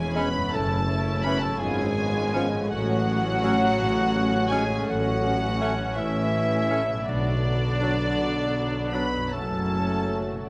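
Muted, veiled violins carry the yearning melody of this solemn, rubato classical excerpt in 6/8, joined by a second, very quiet violin line and a distant cor anglais, hollow flute and bright clarinet, while violas and a close-miked bassoon fill the middle, mellow horns and soft trombones hold sustained chords over a ringing harp's arpeggios, and tuba, cellos and double basses anchor the bass in light reverb.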